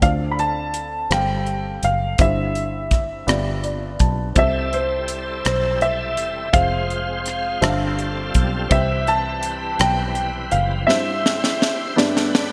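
Jubilant and soulful, this slow gospel excerpt moves at 55 BPM in a straight 6/8, set in C major with a bright 1980s-style digital sheen and a lush hall reverb around it. A clear, worn grand piano carries the melody up front with long sustain, while a woody, slightly detuned upright piano with a lush chorus fills in the accompaniment and adds a short fill from 3.3 to 4.4 seconds. Underneath, a fingered electric bass sounds dark, round and foam-muted, and a crisp, airy fusion drum kit with a high-tuned snare, tight kick, hi-hat and rim click sits polished and gated up front. At 4.4 seconds a shouting tonewheel organ enters with sustained chords, lightly overdriven with key click, chorus vibrato and a slow rotary speaker. The harmony travels through rich colours like G9sus4, a borrowed Fm and Cmaj7 before the bass drops out at 10.9 seconds and the drums close on a fill as the phrase settles toward G.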